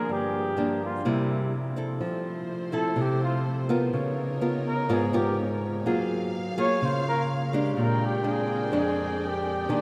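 Sophisticated and sunny, this bossa nova fragment, cut from a longer piece, moves at 125 BPM in a straight 4/4. A small, acoustic nylon-string guitar sits up front, fingerpicked from the first moment and carrying the harmony through Gm7 and C7 before settling onto Fmaj7. A distant, roomy flugelhorn plays the melody in a jazz style with scooped notes, and from 2.0 seconds it takes a solo over lush changes through Db13, Gbmaj9 and Bb13. At that same point a studio string section enters with bowed, sustained chords played sul tasto, soft in attack and gently touched with vibrato, giving an intimate, close ensemble glow beneath the horn. The whole excerpt is bathed in a cathedral reverb whose six-second tail places it in a vast, echoing space, lending the sunny tune a dreamy, floating sheen until it ends at 9.8 seconds.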